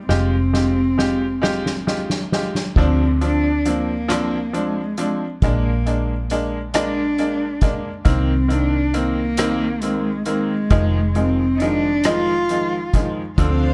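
A dark, bowed cello with vibrato carries the melody from the very start, joined by a round, foam-muted electric bass that sits up front in this melancholic, dramatic pop ballad in six-eight. A bright upright piano with audible action noise and a slightly detuned, woody character fills in the accompaniment, sounding intimate and close. Soft mallets on the drum kit bring a punchy kick, a medium-tuned snare, rim clicks, hi-hat and crash cymbal, with a drum fill running from 0.1 to 2.8 seconds before the music moves into its second section. The harmony turns through minor and half-diminished colours, from Fmadd9 through Dm7b5, Bb7 and Cm7 to Fm7. At 13.4 seconds a lush, focused string section enters with sustained chords, sounding distant, just as the excerpt is cut off. The whole sits in a small room ambience with a dark, warm production.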